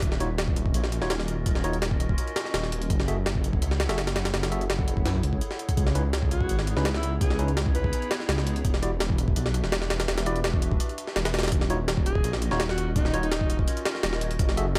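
A warbling, lo-fi pad opens this dark, nostalgic drum and bass excerpt in the jungle style, its sustained minor-ninth chords softened by chorus, phaser and a haze of 12-bit sampler grit in the background. From the first moment, a thick, detuned saw bass sits up front with a beating, menacing low end, while a compressed, pitched-up sampler kit drives the straight 4/4 at 167 BPM with a thumpy kick, a high-tuned snare and hi-hat, gritty and recorded in a large room. A worn, slightly out-of-tune tine electric piano adds stabs behind them, heard as if through built-in speakers and trailed by dub echo. An alto saxophone with vibrato and a smooth top carries a short solo melody in a classical style, entering at 6.3 seconds and returning at 12.1 seconds, its phrases also caught in dub echo. Vinyl crackle and light reverb colour the whole recording as the chords move through D#m9, F#m9, C#m9 and Em9 before returning to D#m9.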